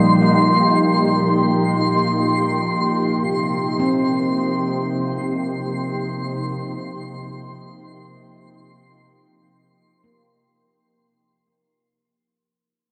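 Reflective and melancholic, this free-time ambient fragment, cut from a longer piece, sets a glassy, ethereal FM pad holding slow-blooming chords up front, thickened by ensemble chorus, as a twinkling granular texture sparkles high above with an octave-up shimmer. In the background a ringing, meditative handpan traces arpeggios with sharp finger strokes through a tape echo, lingering until 11.7 seconds after the pad and shimmer stop at 10.6. A lush hall reverb and the warble of worn cassette tape wrap the whole recording, which fades out from 0.5 seconds onward as Cm7 gives way to Eb69/C.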